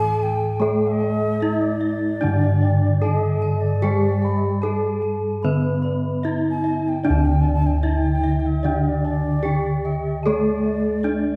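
Awash in the resonant reverb of a concert hall, this serene, shimmering Javanese gamelan excerpt moves at 75 BPM in 4/4 in D pelog barang, with every part sounding throughout its 11.4 seconds. Up front, a bronze metallophone struck with a horn mallet carries the melody, its paired tuning producing shimmering beats, while a second metallophone played with a wooden mallet supplies a ringing, mid-forward accompaniment an octave below. A breathy bass bansuri traces an expressive second line with vibrato and softened highs; round, beating bossed gongs sound prominent arpeggios; a bright, airy metallophone adds arpeggios in the background; and dark, smooth bossed gongs anchor the bass.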